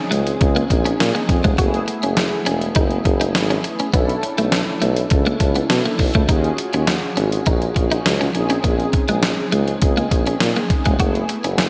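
Mellow synth brass opens this short boogie funk excerpt, its round, detuned sawtooth chords carrying chorus, vibrato and a filter sweep in a dark, sustained tone. A moment later the rest of the band arrives: a crisp 8-bit drum machine with a thumpy kick, medium-tuned snare and hi-hat, overdriven and treated with gated reverb, sits up front alongside a warm tuba that carries the bass line with light vibrato in a pop style. A clean, bright electric guitar plays a picked, compressed riff with subtle chorus. The tempo is a straight 102 BPM in 4/4, and the funky, late-night mood moves through minor eleventh chords, starting on Bbm11 and passing through Gbm11, Bm11 and Ebm11 before returning. A moderate, lush hall reverb and bright 1980s-style digital production give the whole recording a spacious sheen.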